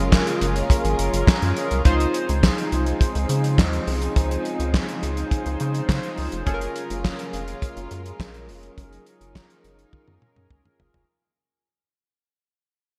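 A damped, up-front drum kit anchors this short cut from a smooth, feel-good early-eighties boogie funk track. Its fat snare, tight kick, hi-hat, toms and handclaps are dressed in gated reverb, and a drum fill closes things out from 9.9 s. Beneath it, a rubbery square-wave bass bounces with a hollow, nasal tone and a resonant filter pluck, sitting dark and prominent in the low register. A glossy, chorused polysynth carries the accompaniment with retro pulse-width movement and a filter sweep, its mellow chords evolving over Gbmaj9 and Dbmaj9 harmony. In the background, a lush studio string section holds even, bowed chords with vibrato, while the bright digital production, with light reverb, begins fading out at 1.9 s.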